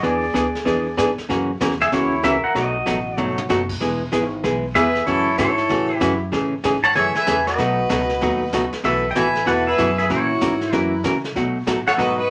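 A bright, twangy pedal steel guitar sits up front with the melody, played with fingerpicks and slide and shaped by volume swells, in this playful, down-home western swing excerpt at a brisk 191 BPM with a swung eighth-note feel. A dark, hollow-body archtop guitar, also up front, picks clean compressed chords over a woody pizzicato upright bass, while a vintage brush kit with dark cymbals, a tight kick and a rolled-off top pumps in a small room and drops a short fill at 3.2 seconds. A clear, focused fiddle with light vibrato enters at 4.8 seconds with a bowed second line as the harmony moves largely through seventh chords, all set in a wet studio ambience.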